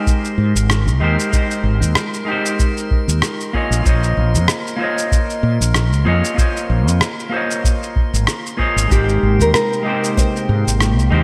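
Sunset chillout with a smooth, wistful mood, this short section is cut from a longer piece and moves over a lightly swung groove. A deep electronic kick and a gritty, compressed cabasa-and-rim-click pattern sit alongside a round, dark fretless bass that is placed up front. A clean, twangy electric guitar carries the accompaniment through the whole passage with digital delay, while a glassy texture of drifting overtones hovers in the background with chorus and its own reverb. Near the end, at 8.9 s, a small fingerpicked nylon-string guitar brings a brief melody with delay, and an airy, breathy pad with chorus enters at the same moment with sustained chords. The harmony moves from Abmaj9 to Bbm11 and back, and the bright 1980s-style digital production is set in a lush hall reverb.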